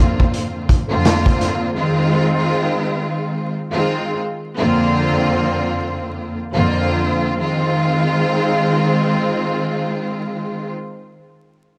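Through worn, warbling old tape with vinyl crackle and light small-room reverb, this tough, moody boom-bap hip-hop fragment sets a lush, bowed symphonic string section with smooth vibrato up front across its full 10.7 seconds, while a gritty, punchy garage drum kit of kick, snare and hi-hat appears only briefly from 0.2 to 1.6 seconds.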